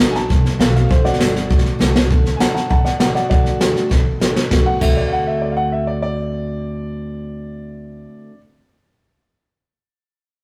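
A rough rehearsal-room recording with warm saturation and a moderate stone-room reverb frames this upbeat, retro rockabilly fragment in D mixolydian, moving at a brisk 199 BPM over a D7 chord. A woody upright piano with long sustain carries the melody, backed by a bright, freshly strung picked dreadnought acoustic guitar and a thumpy gut-string upright bass played pizzicato. An up-front brushed drum kit with dark cymbals, a high-tuned snare and a boomy kick adds two fills before dropping out at 4.9 seconds.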